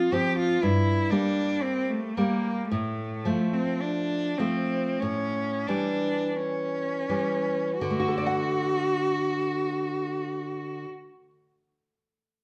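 Captured live in one large studio room with moderate reverb, this solemn, elegiac fragment of a romantic duo places a rich, smooth bowed cello melody with vibrato, ranging from A3 to G4, up front beside full-bodied fingerpicked nylon-string guitar accompaniment, the rubato pulse of 39-62 BPM in 4/4 slowing through the first 7.8 seconds as the harmony passes from F through Gm6 and A7 to settle on D, with the cello stopping at 10.8 seconds and the guitar at 11.3.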